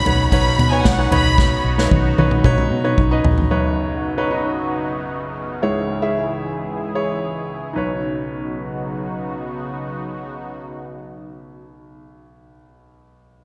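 A hopeful, uplifting piano-driven pop excerpt in B major at 113 BPM opens with a lush, bowed violin section carrying the melody with smooth vibrato until 1.6 seconds, over a clear, up-front concert grand piano with deep bass and a bright, evolving detuned pad with chorus, the violins and piano both touched by slapback echo. A dark, round, foam-muted fingered electric bass and an acoustic drum kit played with bundle sticks, with a tight kick, medium-tuned snare, ride cymbal and toms, drive the opening, the drums rolling into a fill from 1.4 seconds, before both stop at 3.5 seconds. After that the piano and the pad sustain the Badd9 and C#m harmony in a big arena sound bathed in lush hall reverb.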